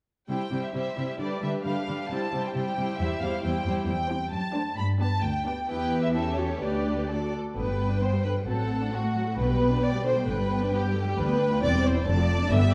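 Cheerful and lively, this quick classical-period passage for string orchestra, cut from a longer piece, sets a distant, vibrato-laden first violin melody over a focused, up-front second violin line, close viola accompaniment and a lush cello bass, with a smooth-topped double bass section joining at 7.6 s, all bowed and blended in a dark, warm production with moderate scoring-stage reverb.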